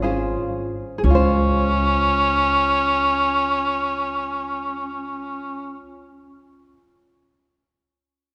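Heard from further back in a concert hall with a long, wet reverb, this short cut from a longer Hawaiian piece drifts at a slow 58 BPM in Db major with a swung 4/4 feel, slowing in its first second over a Dbmaj7 chord. A warm cor anglais carries the melody up front with light vibrato and a classical style, while a pizzicato upright bass on gut strings also sits up front, woody and thumpy. A bright, fingerpicked tenor ukulele gives light accompaniment, and a ringing, metallic vibraphone with the motor off adds a second line in the background, making the mood dreamy and sunny.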